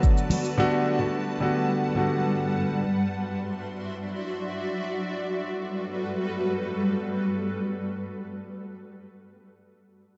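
This soulful amapiano fragment opens with a brief burst of electronic drums, a deep kick, metallic hi-hats and shaker, that is gone by 0.6 seconds, alongside an intimate grand piano whose audible action noise and long sustain carry chords from Bm7 to Gmaj9 until 2.8 seconds. A cloudy, detuned granular pad with slow attack, built-in reverb and sidechain pumping holds sustained chords through D9/F# and back to Gmaj9, lingering alone until 7.9 seconds. The production is dark and warm with light reverb, keeping the drums, piano and pad close and up front.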